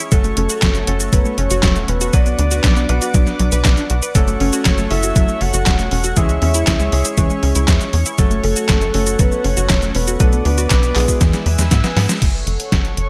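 A dark, chorused analog pad, a bright detuned pluck arpeggiating through delay and background grand-piano stabs open this bittersweet, nostalgic italo disco fragment, joined at once by a punchy, nasal sequencer bass up front, a thumpy overdriven electronic kick and an overdriven, gated-reverb 8-bit drum machine with snare, handclaps, hi-hat, cabasa and crash, while a soft, round octave-layered lead with phaser, vibrato and a cassette-tape tint carries the melody from 0.4 seconds over F#m, Bm and C#m chords before a drum fill at 11.2 seconds and a band accent at 12.1 seconds.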